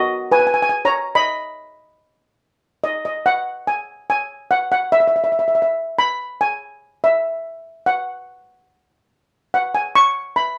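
Bouncy and festive, this brief calypso excerpt at 143 BPM in straight 4/4 features a lone lead steel pan struck with medium rubber sticks, its metallic, shimmering voice sitting up front and airy between F#4 and C#6, opening on an F# chord before moving into a new section at 3.0 seconds, captured with close, detailed microphones in a moderate studio reverb.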